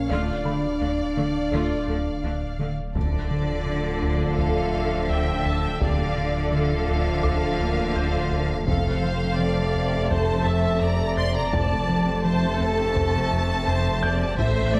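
A brooding, relentless cinematic cue blending orchestra and electronics opens on mellow French horn chords that stop at 2.6 seconds, over a dark violin line in the background, a deep, rumbling detuned saw bass and a very quiet, intimate baby grand piano with audible action noise. Joining them are an intense viola section, a smooth cello section and a rubbery, nasal square-wave bass riff with a resonant filter pluck. At 3.0 seconds a lush violin section takes the melody, bright trombones hold tight sustained chords, a woody double bass section sits underneath and a faint taiko ensemble struck with hard sticks joins, with the harmony shifting at 8.7 seconds inside a moderate scoring-stage reverb.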